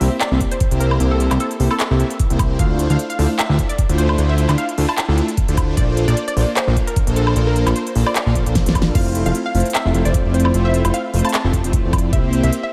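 A playful, bright future bass drop at 151 BPM in F major opens with a lush, wave-folded unison pluck melody over a smooth, full-bodied supersaw riff, both given cassette-tape colour, sidechain pumping and diffuse ambient delay, with a fat, detuned analog bass and a pop drum kit of crisp hats, fat snare, handclaps, woodblock and crash, joined at 0.4 seconds by a knocking electronic kick, while a half-time, swung feel, a drum fill at 8.6 seconds and chords moving from C7 through Dm9 and Bbmaj9 to Fmaj7 sit in a dreamy, reverb-soaked hall.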